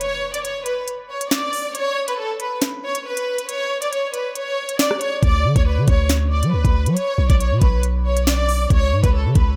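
Tense and ominous, this half-time drill hip hop excerpt at 138 BPM sets a clear, vibrato-rich violin section carrying the melody through an analog delay over a crisp electronic kit of knocking kick, sharp snare, rim click and hi-hats, until a deep, sine-like 808-style bass enters at 5.2 seconds as the chords move from D to Bm and C#5, all in a light digital ambience.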